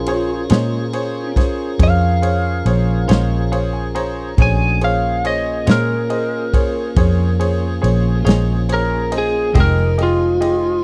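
Slow blues in 12/8 at 46 BPM with a smoky, soulful mood, where a slightly broken-up lead guitar solos over Bbm7 until a move to Fm7 at 9.6 seconds, backed by a dark, foam-muted fingered bass and a punchy, up-front acoustic drum kit on kick, snare and ride, while a piping tonewheel organ holds chords through a slow rotary speaker, a brilliant, slightly detuned upright piano adds a fill from 3.1 to 4.4 seconds, and a clean electric guitar with tremolo sits in the background, all captured in a dry, close 1970s-style studio sound.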